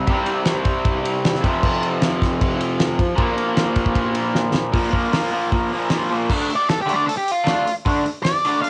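Cloth-damped, thuddy drums with a fat snare, tight kick and dark cymbals drive a straight 154 BPM 4/4 beat under a bright, overdriven, double-tracked garage guitar riff in D minor, with a drum fill at 4.4 seconds, before a dark octave-fuzz lead guitar with a cassette-tape grain enters at 6.6 seconds for a short solo, giving this gritty, menacing garage rock home recording a raw, up-front feel in a light reverb.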